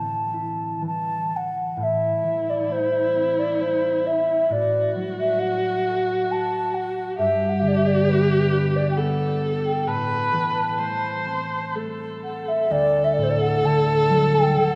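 Haunting and mournful, this Celtic slow air in A dorian drifts at 66 BPM in 3/4 with a free, rubato feel, set in the long wash of a cathedral reverb. A hollow, pure wooden baroque flute carries the melody with vibrato and tongued notes over a ringing, thumb-plucked concert harp that sits up front. At 1.8 seconds a single dark, bowed viola joins with an expressive second line full of vibrato and portamento, and the chords move from Am through G and Amadd9 to D in this fragment cut from a longer piece.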